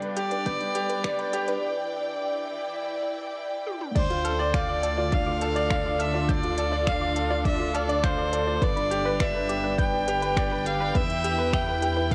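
Piano and strings electronica at 103 BPM in D dorian, moving and cinematic, this excerpt opens with a build-up and filter sweep where a woody, slightly detuned upright piano riff with long sustain sits over bowed, vibrato-rich string chords that pump with sidechain, joined by a nasal, airy-bowed solo violin melody up front and a mellow, very quiet analog pluck playing arpeggios. A deep, layered electronic kick and a tape-colored electronic kit of smooth hi-hats, finger snaps, toms and crash carry the groove through a break and a drum fill at 3.7 seconds. At the drop at 4.0 seconds, a dark, rumbling, saturated detuned saw bass enters with sidechain pumping, all under light reverb and the filtered character of a home cassette recording.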